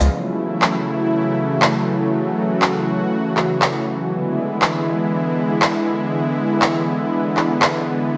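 Emotional and driving, this progressive house passage is built on a lush, detuned supersaw pad that holds soft-attack sustained chords from F#m7 to E7, with a long release. Layered electronic handclaps sit up front from 0.6 seconds in, in a straight 4/4 metre. A moderate digital room reverb gives the sound a polished sense of space in this short cut from a longer piece.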